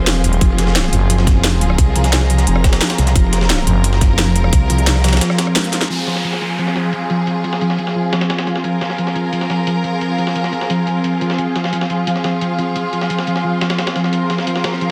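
Tense and futuristic, this dark technical drum and bass cut runs at 175 BPM in F minor, resting on a single F minor chord. It opens heavy, with a growling, aggressive bass chorused and overdriven into a wobbling snarl, joined by a thick FM growl bass, while a tight, up-front electronic kick drives beneath a drum and bass kit of cracking snare, crisp hats and rim clicks. Above them, a lush bowed string section holds sustained chords, an ethereal detuned pad drifts in ensemble chorus and built-in reverb, and a soft, round pluck spins dark arpeggios through tape echo and cassette coloring, these three parts pumping against the sidechain. A pitched-up, gritty breakbeat kit, filtered on snare and hats, runs quietly throughout. At 5.2 seconds the low end drops away for a short break marked by a band accent and a drum fill, and from 5.9 seconds a downlifter sinks beneath the strings, pad, pluck and breakbeat as the second section floats on in a light digital ambience under a dense, heavily limited master.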